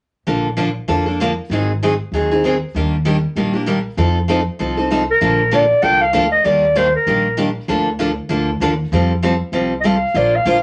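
A lively, swinging slice of acoustic string swing opens with a picked steel-string acoustic guitar, woody and up front on its old strings, comping over a dark, thumpy upright bass plucked with growly pizzicato. At 5.1 seconds a growling clarinet takes the solo melody, raspy and gritty with subtone, scooped notes and light vibrato, sounding somewhat distant and roomy yet sitting loudest in the mix, before returning briefly at 9.8 seconds. Moderate studio reverb lends the short cut a natural space.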